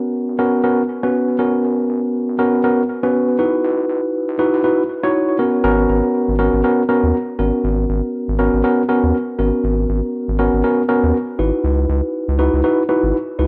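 Hypnotic and smooth, this deep house excerpt sets a mellow, worn, slightly out-of-tune tine electric piano playing up-front stabs through a low-pass filter and tape echo from the start over a round, deep analog bass entering at 0.3 s, moving from G#m11 to C#m11 through a build-up that drops at 5.6 s, all in a gritty cassette recording with a moderate plate reverb.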